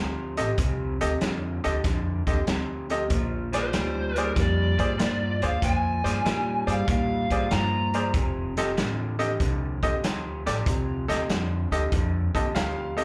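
Heard through a club PA with light reverb, this swaggering, gritty electric blues shuffle sets a dark, slightly broken-up guitar riff with subtle chorus and slapback echo over woody pizzicato upright bass and a raw garage drum kit with a punchy kick and pumping room sound up front, while a bright, worn concert grand piano with audible action noise adds accompaniment and a fill from 11.9 s, and an overdriven lead guitar with slapback echo carries the melody from 3.6 to 8.1 s.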